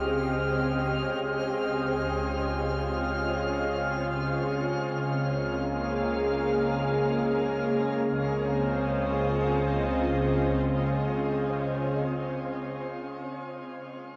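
This ambient piece, cut from a longer work, floats in a weightless, peaceful calm. A soft, organ-like pad sits up front with pure, slowly blooming sustained chords thickened by ensemble chorus, moving from Fm9/Db to Eb9sus4/Db and settling on Dbmaj9 at 8.1 seconds. Beneath it, a deep, ominous drone rumbles darkly in the bass, while a reedy, breathing harmonium fades in over the first 8.1 seconds to hold a mellow drone. Above them drifts a glassy texture of chorused overtones, which lasts until 8.1 seconds. A drenched shimmer reverb with a very long tail surrounds the whole, and a worn cassette-tape character adds a warbly pitch drift.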